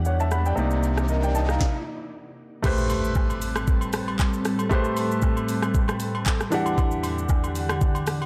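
A dark, warm digital ambience frames this soulful, late-night amapiano excerpt, where a clear, intimate grand piano with audible action noise and a glassy, ethereal FM pad with ensemble chorus and built-in reverb carry the chords over an electronic afro-pop kit with a knocking kick and sharp snare. A thick, saturated sub bass drops out at 1.6 s as an electronic riser leads into an impact at 2.6 s, when agogo bells and woodblock join in the background.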